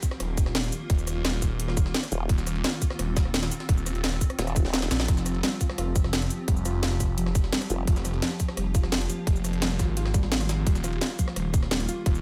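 Driving straight 4/4 drum and bass at 172 BPM opens this tense, mechanical cut from a longer dark technical piece: a tight, up-front electronic kick and an overdriven kit with a cracking snare, bright hats, rim click and shaker are layered over a gritty, pitched-up jungle sampler-style kit with a high-tuned snare and ride sitting in the background, while a swirling, thick, phased detuned saw bass drives the low end, a formant-sweep wobble bass cuts in briefly at 2.1, 4.4 and 7.7 seconds, a swarming granular drone holds pumping sustained chords beneath, and from 5.1 seconds a soft, round pluck adds chorused, tape-echoed arpeggios over the shift from Eb5 to Fm, all in a digital ambience.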